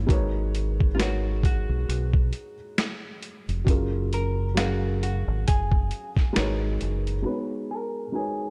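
Lo-fi hip hop at 67 BPM in G# dorian, nostalgic and hazy, cut from a longer piece with a swung 16th-note feel, where a felt-muted upright piano with thick felt, audible action noise and a cassette-tape softness lays down G#m11 and F#maj9 chords over a round, punchy fingered dub bass and an up-front, gritty boom bap sampler kit with a thumpy kick and a high-tuned snare; a clean, picked hollow-body jazz guitar carries the melody low in the mix through a low-pass filter and tape echo from 0.9 seconds, and the bass and drums stop at 7.2 seconds, leaving piano and guitar in light digital ambience within a dark production.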